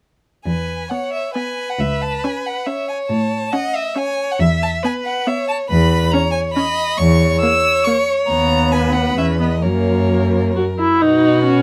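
Two violins and a cello begin together at 0.5 s, with the viola joining at 0.9 s, in a quick, spirited and cheerful classical-period movement for string quartet in triple time. The first violin carries the melody high above the ensemble with a rich, smooth and even tone coloured by vibrato, while the second violin plays an expressive second line beneath it, using vibrato and gliding portamento. The viola fills in the middle accompaniment with soft attacks, vibrato and expressive slides, and the cello anchors the bass with a warm, vibrant tone, also using portamento. The tempo is flexible and rubato, giving the phrases a lively, breathing quality, and the harmony moves through colourful chromatic chords before settling toward a close at 11.0 s. Close, detailed microphones and light reverb capture each bowed line clearly in this passage, which is cut from a longer piece.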